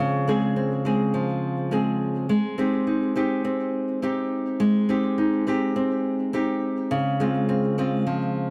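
A gently swung sixteenth-note feel at 104 BPM in 4/4 carries this short folktronica excerpt in A-flat major, tuned to A4 = 442 Hz, with a delicate, playful mood. A fingerpicked nylon-string guitar plays solo for the full 8.5 seconds, its classical, acoustic tone sitting up front with a touch of digital delay, moving between Dbmaj7 and Abmaj7 in the range of Db3 to Ab4. Light reverb gives the close guitar sound a soft sense of space.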